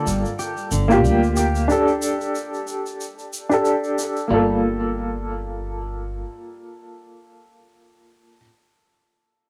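A slightly detuned, woody upright piano sits up front in this dark, brooding trip hop fragment at a lightly swung 92 BPM in G minor, colored by tremolo, low-pass filtering, plate reverb and tape echo, with bright, twangy electric guitar arpeggios in lush chorus that stop at 4.6 s, thumpy pizzicato upright bass on gut strings, and a ringing egg shaker that drops out at 4.3 s, as the harmony moves from Gm7 to Dsus4 under a hazy home-cassette sound.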